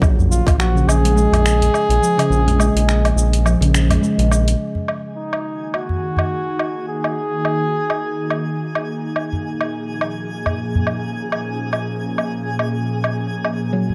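A warm, mystical organic downtempo groove in Eb minor at 105 BPM with a 16th-note swing, this excerpt opens on a smooth, sidechain-pumped synth bass, a tight electronic kick that lasts only to 0.6 seconds, gritty overdriven sampler-style drums with snaps, hi-hat, shaker and woodblock, a small saturated udu, and ringing handpan arpeggios with delay. A veiled, forceful bucket-muted trumpet carries a jazz-style solo line with delay up front until 8.8 seconds. From about 5 seconds a twinkling granular shimmer and an ethereal, detuned chorused pad with its own reverb fill out the dark, warm production as the harmony moves from Ebm to Bbm7.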